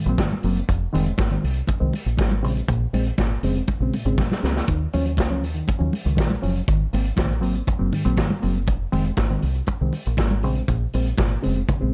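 A reedy, lightly overdriven electric piano opens this glamorous, driving disco excerpt at 120 BPM in straight 4/4, tuned to A4 = 435 Hz, its bright chords colored by phaser and tube saturation as they move through Ab7, Fm7, Bbm7 and Ebm7. A round, punchy, foam-muted fingered bass sits up front alongside a gritty vintage drum kit with a tight kick, medium-tuned snare, hi-hat and a rolled-off top, which plays a fill at 4.2 seconds. Bright, damped, hard-hand congas with a thin skin stay in the background of a dark small-room mix.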